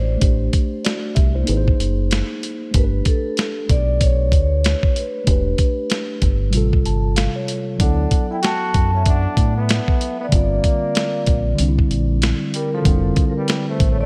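A light reverb wraps this mellow, smoky jazz-hop excerpt, and the dusty, sampler-style drum kit sits up front with a gritty, tape-warmed, compressed character, a thumpy kick, a medium-tuned snare and hi-hat, entering at 0.2 seconds. The groove moves at 95 BPM in 4/4 with a lazy swing on the sixteenths, anchored by a deep dub fingered electric bass that sounds dark and round. A clean tine electric piano plays through its built-in speakers, comping through a jazzy progression that opens on Am7 and passes through Em7 and Gm7 before landing on Fmaj9, and it steps forward with a short fill at 6.5 seconds. Alongside it, a vibraphone played with soft mallets and its motor off carries the melody in a metallic, ringing, smooth tone, trailed by a diffuse ambient delay. At 7.8 seconds a bright, punchy trombone joins as a second line, forceful yet with a smooth top, scooped notes and a light vibrato in a jazz style.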